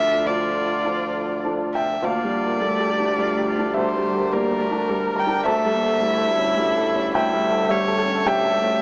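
An up-front solo violin, bowed sul tasto with light vibrato and an airy, soft-attacked tone, carries the melody in this fragile, melancholic neoclassical fragment in a rubato three-four, over a woody, intimate upright piano with audible action noise, a background viola in accompaniment, a background cello singing a second line, a pure, floating bowed double bass and a deep, moody sawtooth pad that enters very quietly at 0.2 seconds, while the harmony moves from Dm to Gm7/D at 2.0 seconds and on to A7/D at 5.5 seconds, the mix sitting in light reverb with a small-speaker sound.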